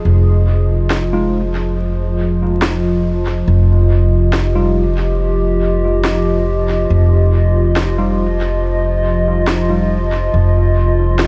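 A warbling, detuned tape-like pad with chorus and 12-bit sampler grit holds sustained Fm7 and Ebadd9/F chords up front in this meditative, spacious ambient dub excerpt at 70 BPM, joined by a woody pizzicato upright bass with tube saturation on a low F, an electronic snare with dub echo from 0.9 s, and a worn, slightly out-of-tune tine electric piano playing filtered stabs with dub echo in the background from 1.1 s to 10.0 s, the whole set in light digital reverb and vinyl crackle.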